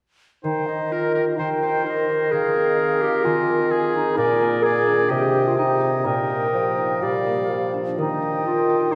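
A pure concert flute with expressive vibrato and a soft attack floats above a clear oboe and a warm, distant clarinet, the three sharing the second line of this fast, spirited and graceful romantic orchestral passage in Eb major at 127 BPM. Beneath them a dark bassoon with light vibrato supplies the accompaniment, while a mellow, fingerpicked concert harp rings out arpeggios, all five parts playing together from 0.4 to 8.9 seconds. The harmony travels from Eb through Cm and Fm7 to Bb7 before settling back on Eb, and a long cathedral reverb gives the excerpt the roomy sound of a church or concert hall.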